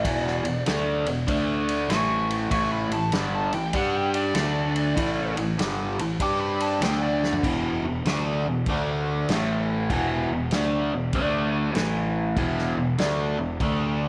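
Blues rock power trio with a southern rock edge, swaggering and raunchy on a swung 4/4 groove: a double-tracked semi-hollow guitar, overdriven and up front with phaser, drives the riff over a growly fuzz bass and a vintage drum kit with a punchy kick and dark cymbals, while a bright, biting lead guitar solos until 7.4 seconds, closed off by a drum fill, all within a short, lightly reverberant small-room excerpt cut from a longer piece.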